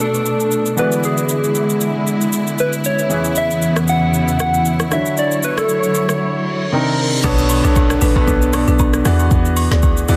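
Over a swung sixteenth-note amapiano groove from an up-front afro-pop drum kit with a deep kick, woody snare, metallic hats and shaker, a deep late-night mood unfolds as a gentle, warbling FM synth lead with chorus and digital delay carries the melody over an intimate, clear baby grand piano and a smooth, bowed studio string section, until a very quiet reverse cymbal and downlifter at 6.4 seconds lead into a drop at 7.2 seconds, where a round, dark log drum bass enters alongside woody, delayed marimba stabs and background agogo bells and woodblock in a dense, heavily limited mix.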